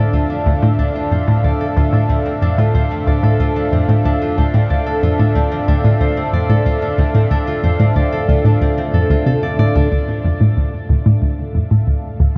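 Hypnotic and expansive, this ambient, sequencer-driven space music moves at 92 BPM in a straight 4/4, settled in D minor on a Dm7 chord, and is cut from a longer piece. Up front sits a hollow, bouncy square-wave pluck playing a low riff between D2 and C3, its detuned, dark tone shaped by a filter pluck with a moving notch, a fast attack and short decay, and coloured by chorus and tape echo. Behind it, an evolving, full-bodied pad of sawtooth and sine with a sub octave holds sustained chords from D4 to F5, opening with a slow attack and a filter swell under its own chorus. A fingerpicked concert harp rings out arpeggios between C4 and D5, its acoustic tone trailed by tape echo, lower in the mix than the other parts. All three play together throughout, with the music shifting into a new section at 9.9 seconds, and the whole is bathed in a huge, wet reverb that places it in a vast, echoing space with the grain of cassette tape.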